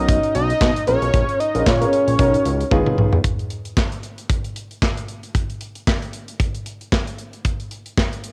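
Heard through a lightly reverberant home cassette recording with a touch of studio ambience, this excerpt of early-eighties boogie funk carries a late-night, danceable mood at 114 BPM in 4/4, with a gentle swing on the sixteenths. A fat, detuned analog lead with a sub octave, chorus and vibrato sits up front, singing a short melody over a concert grand piano whose deep bass and short sustain fill out the accompaniment. Beneath them, a thick, nasal synth bass with a saturated filter pluck outlines the harmony as it moves from Bmaj9 to Bbm7, back to Bmaj9 and on to Db7. An acoustic studio drum kit with handclaps, hi-hat, tight kick, medium-tuned snare and toms plays with a rolled-off top and a mid-forward balance, closing the opening phrase with a fill from 2.7 seconds. The lead, piano and bass fall away by 3.2 seconds, leaving the drums alone through the second section until 8.3 seconds.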